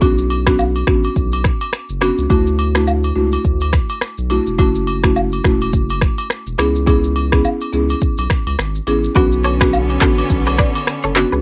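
Afrobeats at 105 BPM with a swung sixteenth feel, this smooth, mellow passage from a longer piece rests on a woody, buzzing marimba and a thick, saturated sine sub bass, both up front. Alongside them are an electronic afro-pop kit of deep kick, finger snaps, handclaps, rim click and shaker with cassette tape color, and agogo bells and woodblock at a lower level. The chords move from Bmadd9 through Dadd9, F#m7 and C#m7 and return to Bmadd9 at 9.2 s, where lush bowed strings and a bright, twangy clean electric guitar riff with analog chorus and delay join the dry home cassette recording.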